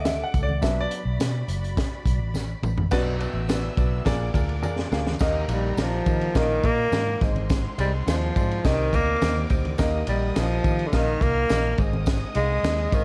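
An up-front tenor saxophone with light vibrato takes the jazz-style lead from 5.5 s in this joyful, danceable 1960s-style soul excerpt, riding over a clear concert grand piano featured at the opening, a round, foam-muted vintage electric bass, a crunchy breakbeat kit with a high-tuned snare, tight kick and dark cymbals that plays fills at 2.3 s and 4.6 s, very quiet bright congas, a jingly background tambourine and a bowed string section with sul tasto vibrato, set in a dark, warm production with light reverb.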